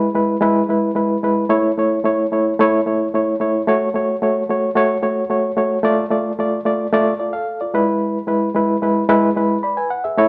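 A straight, even 4/4 pulse drives this short cut from a longer soul piece, joyful and made for dancing. A single electric piano carries everything, playing alone from start to finish with a reedy, barky bite. Its sound is lightly overdriven and shimmers under a fast tremolo, heard through the instrument's built-in speakers and placed up front. The harmony moves from E to A, settles on F#m, darkens briefly on Dm at 5.8 seconds, and returns to E at 7.7 seconds. A moderate reverb from a large studio gives the bright keys a sense of space, and the live-in-one-room capture keeps the performance close and lively.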